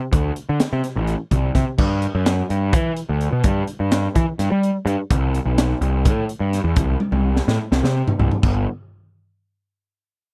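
A growly, fuzz-soaked picked electric bass sits up front, bright and overdriven, and carries this wistful, playful cut of math rock and midwest emo in an odd 7/8 metre. Beside it, a crisp acoustic fusion kit of crash, hi-hat, punchy kick, high-tuned snare and toms plays in a small, pumping room, with a drum fill from 7.0 to 8.4 seconds closing out the middle section. The mix is close and dry, with little reverb, and both parts drop away shortly before the fragment ends.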